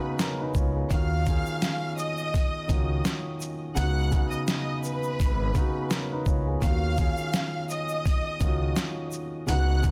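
Reflective and moody, this short boom-bap hip-hop cut from a longer piece rides a lazy, swung groove. A dark, mellow baby grand piano sits up front from the start, its tape-worn tone coloring chords that move between Db9sus4 and Ebm9, while a lush bowed violin section carries the melody high above with smooth vibrato and a trailing delay. At 0.2 seconds a gritty, pitched-down sampler-style drum kit drops in with a thumpy kick, medium-tuned snare, hi-hat and shaker, compressed and pushed forward, joined by a grainy egg shaker tucked in the background. A woody pizzicato upright bass on gut strings enters at 0.5 seconds, adding a warm, thumpy low end. The sound is dry, densely limited in a modern way, with a faint mains hum underneath.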